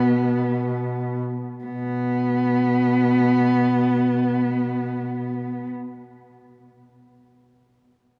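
Longing and solemn, this brief free-time Caucasian folk lament sets a single bowed cello, dark and woody with vibrato, singing the melody up front over a close-miked duduk holding a vibrato drone, the whole fragment cut from a longer piece and bathed in a wet cathedral reverb that lingers for 4.8 seconds, with the music shifting to a new section at 1.6 seconds.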